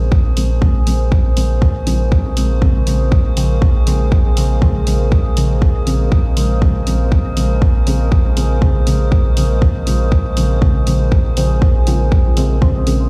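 A deep, up-front electronic kick anchors this hazy dub techno piece at 120 BPM in 4/4, entering at 0.1 seconds, with dark, layered hi-hats joining at 0.4 seconds and a light swing on the 16ths. Beneath it, a round, sine-based sub bass holds Bb1, while a soft, detuned chord stab blending triangle, sawtooth and sine tones sounds a Bbm9 chord through chorus, phaser, a moving notch, a filter sweep and dub echo. A moody, nasal analog pad sustains behind it with a slow attack and long release, and a faint, eerie FM drone adds a metallic, warbling, inharmonic tone around Ab4 with its own built-in reverb. The pad, stab, bass and drone all breathe with sidechain pumping. The mix sounds as if played through a big sound system in a bare stone room, with a faint mains hum underneath, and this 13.1-second passage in Bb minor is cut from a longer piece.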